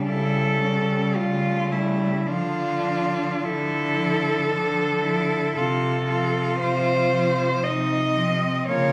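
Classical and elegiac, this melancholic fragment of a lyrical piece for four bowed cellos unfolds in a rubato 3/4 at 50-58 BPM in D minor, with a rich, focused, vibrato-laden melody sitting up front yet sounding distant, a clear second line, a bright, intense accompaniment with light vibrato and a smooth top, and a low bass line beneath, all moving from A7/C# to Dm to F7/C within the wet reverb of a recital hall.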